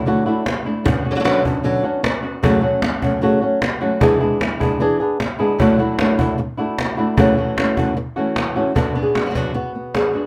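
Flamenco at 152 BPM, passionate and mournful, with a dark, boxy, thumb-plucked guitar carrying the melody up front, finger squeak audible on its strings. A second flamenco guitar, fingerpicked on fresh strings with a warm tone, adds chordal stabs beneath it, moving through Dadd9, Bmadd9, F#m and E7 before settling on Bm near 8.8 seconds. A woody cajon with faint snares enters at 0.3 seconds, sounding distant as if in a large room, while the close, detailed recording keeps the guitars intimate in this short cut from a longer piece.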